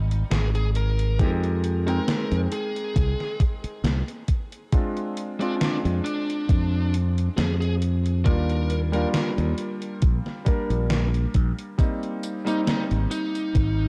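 A dark, cassette-tape production with light reverb gives this nostalgic, woozy vaporwave excerpt its hazy character, moving at a slow 68 BPM in 4/4 with a gentle swing on the sixteenths over Abmaj9, Fm9, Fm6 and Ebmaj7 chords. A clear, vintage electric grand piano with a clangy low end provides accompaniment under subtle chorus and tape echo, while a bright, growly fingered electric bass sits up front. An overdriven, picked lead guitar carries the melody through tape echo, and a gated 80s drum machine with hi-hat, tambourine and gated-reverb snare is joined at 1.2 s by a thumpy, overdriven electronic kick placed prominently in the mix.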